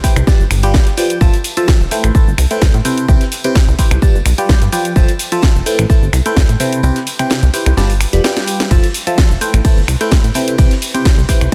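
A punchy, tape-warm electronic kick drives this uplifting, euphoric piano house groove at 128 BPM in C major, with a house kit of cracking snare, cabasa, finger snaps, hi-hat and ride, and a very quiet acoustic studio kit of hi-hat, snare and tambourine beneath a biting, bright FM electric piano riff treated with phaser and dub echo, and a plucky, wave-folded analog bass that pumps against the kick through a G7, Fmaj7, Am9, Cmaj7 cycle, until the kick drops out at 6.8 seconds and a drum fill at 8.4 seconds ushers it back in a dense, heavily limited modern mix.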